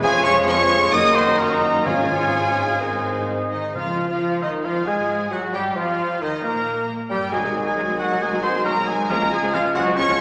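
A fast 134 BPM pulse in 4/4 pushes this restless, dramatic romantic orchestral passage forward, though the rubato feel lets the tempo breathe, and it is cut from a longer piece. The violin section carries the melody with a lush, vibrato-rich bowed tone, while a very quiet second violin line, a pure and hollow silver flute, a punchy oboe and a clarinet in the background weave supporting lines around it. Beneath them a distant, roomy bassoon and a rich, expressive viola section fill out the accompaniment, with cellos and double basses anchoring the bass softly in the background. Tight, very quiet trombones with a bright edge and mellow French horns hold sustained chords, and a soft-attacked trumpet section adds stabs. Timpani struck with hard mallets sound close and dry from 1.9 to 4.4 s, and the harmony moves from Db/F through Ebsus24 and Eb to land on Db at 9.1 s. The ensemble sits in a wet scoring-stage reverb with a 2.0-second decay, lending the whole an expansive, cinematic sweep.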